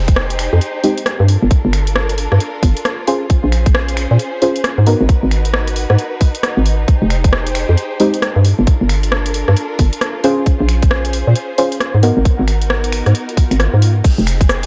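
Skippy and late-night, this two-step UK garage excerpt at 134 BPM swings over a dark, minor-ninth progression, with a tight, layered kick and a hollow, bouncy FM bass up front, an overdriven analog drum machine of hi-hat, finger snaps, rim click, cabasa and crash cymbal heard in a large room, deep, nasal chord stabs with chorus and dub echo in two bursts, a lush, woody violin section holding sustained chords that pump with sidechain compression, and a very quiet electronic swell at 13.3 seconds.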